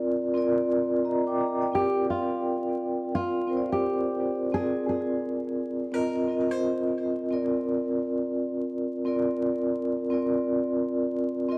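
A moderate plate reverb and a bed of vinyl crackle frame this short, dreamy lo-fi hip hop excerpt, cut from a longer piece and set at 86 BPM in 4/4 with a lazy swing on the sixteenths. A vibraphone played with soft mallets carries the accompaniment from start to finish, its metallic, ringing tone softened by a medium motor vibrato and a cassette-tape haze, close-miked and sitting full and up front. At 1.8 seconds a nylon-string guitar takes the melody, its thumb-plucked, full-bodied classical tone showing audible finger squeak and trailing an analog delay, before it stops at 7.3 seconds. The harmony rests on a C9sus4 chord, shifts to Bbsus24/C as the guitar line nears its close, then returns to C9sus4. The mood is nostalgic, the mellow, warm mallet tone giving the clip a dreamy feel.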